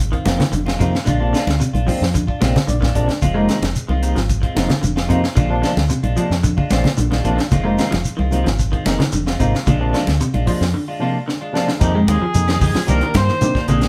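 A straight 4/4 afrobeat groove at 112 BPM in F dorian, driven by a tight, dry funk kit with a high-tuned snare up front, a round, punchy fingered bass, damped congas in the background and a grainy shekere, sets a hypnotic, driving mood as Fm7 and Bb7 alternate. Over it, a slightly broken-up, twangy guitar through a small old amp picks arpeggios, a dark semi-hollow guitar adds clean stabs with spring reverb, and a barky, lightly overdriven tine electric piano comps with fast tremolo and plays a short fill at 2.4 seconds. After a break and drum fill ending at 11.8 seconds, the chords shift to Fm9 and Cm9 and a mellow, distant horn section enters with a brief melody in this live-room cut from a longer piece.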